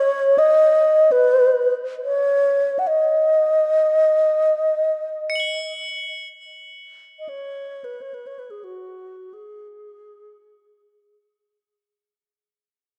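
World meditative music in free time, haunting and spacious, with an airy, close-miked wooden-headed alto flute up front carrying an unsteady, vibrato-laden melody with soft attacks through a diffuse ambient delay until 11.2 s, while bright, shimmering crotales struck with brass mallets ring high and dry until 12.3 s, all set in a wet church reverb with the worn, warbling pitch drift of old cassette tape, and fading out across the first 11.8 seconds of this passage cut from a longer piece.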